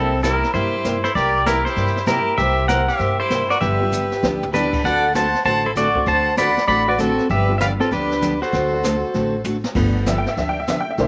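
A compressed, fingerpicked pedal steel guitar leads this swinging, down-home western swing excerpt at 195 BPM in G major, its volume swells and slides riding over a clear, lightly vibratoed fiddle second line until both stop at 9.4 s. Beneath them, a full-bodied dreadnought acoustic guitar, a woody, thumpy pizzicato upright bass and a brushed jazz kit with dark cymbals and a boomy kick keep the swing moving through dominant-seventh chords, with drum fills at 3.9 and 9.4 s. A detuned, jangly honky-tonk upright piano sits in the background before taking a short solo from 9.8 s, all bathed in moderate spring reverb.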